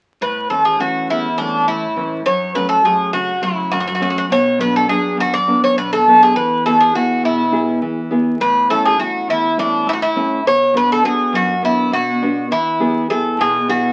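The sound comes from a very old 78 rpm record, with vinyl crackle, highs that stop at 10.6 kHz, and a wet studio reverb lending the room a short glow. This sunny, warm Greek folk excerpt for a bouzouki band moves at 205 BPM in eighths, in a straight 7/8, in A major, tuned to A4 = 435 Hz. A picked Greek bouzouki carries the melody between D4 and D5 from 0.2 seconds, its bright, metallic double strings, some doubled at the octave, sitting up front. Beneath it, a fingerpicked nylon-string guitar supplies a full-bodied, deep classical accompaniment reaching from E2 to G#4, also placed close. The single section cycles through A, F#m, Bm and E, then returns to A before moving to Bm at 10.5 seconds and closing on E at 12.5 seconds.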